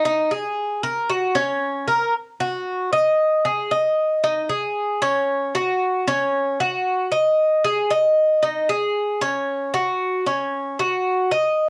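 Nostalgic and sultry, this short Latin passage in Eb minor moves at 114 BPM in a straight 4/4. A lone Cuban tres carries it from start to finish, up front and picked on metallic double strings, some doubled at the octave, ranging from Db4 to Eb5. A brief opening phrase gives way to a new section at 2.1 seconds, heard through the tape color of a cassette home recording in a small, moderately reverberant room.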